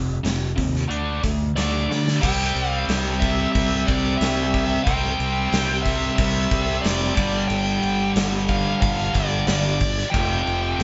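Recorded as a band playing live in one room, with moderate studio reverb and a top end that rolls off early, this swaggering, brooding classic rock excerpt opens on a tight, double-tracked distorted guitar riff over a growling, overdriven fingered electric bass. A gated 80s drum kit with bright cymbals, a tight kick and a polished stone-room sheen enters at 0.2 seconds, a bluesy, warm lead guitar takes up the melody high above from 1.6 seconds, and a drum fill carries the band into the next section at 2.2 seconds. The riff guitar and drums sit up front in a straight 4/4 groove.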